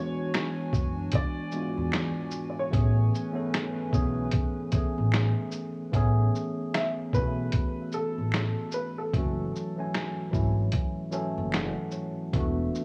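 A swung 16th-note groove at 75 BPM in 4/4 sets an unhurried, nostalgic lo-fi hip hop mood in A major, in a cosy passage cut from a longer piece. A compressed, pitched-down sampler-style drum kit, up front with a thumpy kick, a medium-tuned snare, hi-hat, shaker and snaps, enters at 0.3 seconds. Beneath it, a woody pizzicato upright bass carries the low end, and a faint, close finger snap adds a very quiet human touch. A worn, slightly out-of-tune tine electric piano holds the accompaniment throughout with cassette-tape colour, while a dark, intimate upright piano with audible action noise and tape echo sings the melody until 10.5 seconds. A hollow, flute-like pad with a slow attack and chorus sustains chords through the opening section until 5.9 seconds, then returns briefly at the close as the harmony moves from E9 through Amaj9 and F#m7 to E9sus4.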